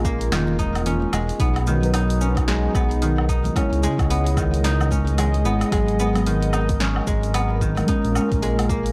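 A silvery, fingerpicked guzheng plays ringing arpeggios with tape echo at the front of this hypnotic, warm organic downtempo groove at 111 BPM in G# minor, swung on the sixteenths. A round, deep analog bass pumps beneath it, while muted felt-like synth keys with chorus and echo and a smooth, detuned pad with chorus both breathe with sidechain pumping in the background. A deep electronic kick and a deep house kit of cabasa, hi-hat, punchy snare and woodblock drive the beat, with very quiet hand-struck congas from 0.5 to 8.3 seconds, all set in light reverb and digital ambience.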